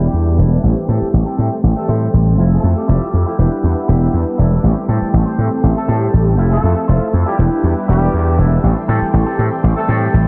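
A straight 4/4 house groove at 120 BPM in A minor is driven by a gritty, overdriven slap bass that sits punchy and up front, while the chords cycle through Em7, Am7 and Fmaj7 in this nostalgic, funky passage cut from a longer piece. Mellow synth brass fills out the accompaniment with a round, detuned sawtooth tone treated with chorus, phaser and a filter sweep. A lush string machine holds soft-attack chords in the background, a twangy, envelope-filtered guitar plays a clean picked riff, and a bright horn section with octave doubling and light vibrato carries the melody, all in an echo-heavy mix with light digital reverb and a faint mains hum.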